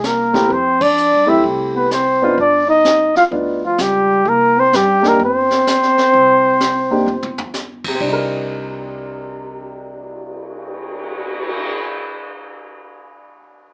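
A bucket-muted trumpet sings a veiled, softly vibrato melody over a dark trombone second line, pizzicato upright bass and a vintage brush kit at a cool, moody 128 BPM swing in C minor, with a woody upright piano entering at 0.3 s, a band accent at 0.7 s, and a drum fill at 7.1 s closing the horns' phrase before piano, bass and brushes carry on to a Cm9 chord through a small-speaker, small-room sound.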